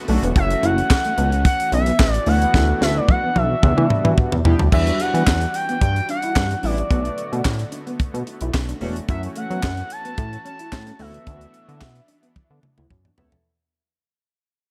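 Lightly reverberant studio ambience surrounds this short cut from a danceable, funky early-eighties boogie funk track, and it fades out gradually from 4.7 seconds to the end. Up front, a dry, polished funk drum kit drives a straight groove with a tight kick, high-tuned snare, airy hi-hat, handclaps, toms and crash cymbal, and it plays fills around 2.5 and 12.4 seconds. Beside it sits a glossy, nasal synth bass built from pulse and sawtooth waves, with a plucky filter, pulse-width modulation and chorus giving it a retro character. A smooth, expressive sawtooth lead carries the melody up front, colored by vibrato, portamento glides and chorus. Underneath, a mellow chorused polysynth with a sub octave plays the accompaniment, a dark, slightly broken-up fingered electric guitar riff with analog chorus stays in the background, and a very quiet detuned analog pad holds soft-edged, tremolo-tinged chords. 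The harmony moves through lush chords such as F#m7, D69, Em9 and Bm7.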